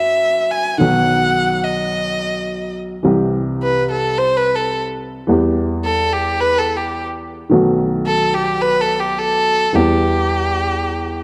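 A clear, focused bowed violin with vibrato, close and up front, and a woody upright piano with short sustain, also up front, sound together from the start in this passionate, tense rubato tango fragment cut from a longer piece, where the violin carries the line over harmony moving from F#7 through B, C, Em and B7 back to Em, all set in a moderate scoring-stage reverb with a dark production.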